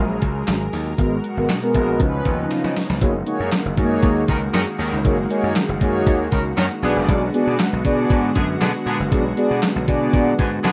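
Smooth and feel-good, this early-eighties boogie funk cut moves with a straight, easy groove in 4/4, lifted from a longer piece. Up front, a mellow synth brass with a round, sawtooth edge and a soft chorus carries the accompaniment, while a lush unison pad holds thick, detuned chords with a slow attack and long release beneath it. A gritty slap bass, overdriven and punchy, anchors the low end, and a crisp 8-bit drum machine enters at 0.2 seconds with a thumpy kick, a medium-tuned snare, handclaps and hi-hat, sounding re-recorded in a small room. After a drum fill leads into the second section at 3.0 seconds, a distant, roomy horn section joins at 4.3 seconds as a second line, its light vibrato bathed in plate reverb. The mix has the rough feel of a home demo, with light reverb and a layer of vinyl crackle.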